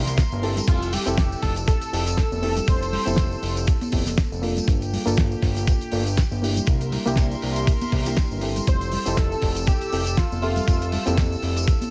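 Sunny and groovy, this nu-disco excerpt struts at 120 BPM in F major with a lightly swung 16th feel, cycling through C7, Fmaj7, Gm7 and back. An up-front, thumpy, tape-warm electronic kick anchors a dry, dark 70s kit of fat snare, hi-hat, crash and tambourine, while ringing congas and cabasa sit in the background and a thick, saturated analog bass holds the low end. A reedy, worn electric piano with overdrive, delay and sidechain pumping shares the chords with floating, pure bowed strings, and a bold, warbling unison lead with vibrato and dub echo carries the melody from 0.4 to 3.6 seconds and again from 8.7 seconds.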